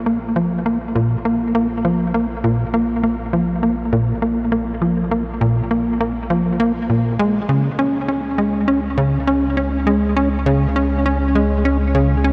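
A straight 4/4 pulse at 101 BPM drives this mysterious, expansive piece of ambient, sequencer-driven space music in Bb minor: a tight, punchy sequencer bass riff of sawtooth and square tones, with ring modulation and a filter pluck, sits up front through analog delay and shimmer reverb, while a round sine sub bass fades in beneath it across the 12.3 seconds of this cut from a longer piece, and the harmony moves from Bb5 to Db5 at 7.5 seconds inside a huge, dark reverberant space.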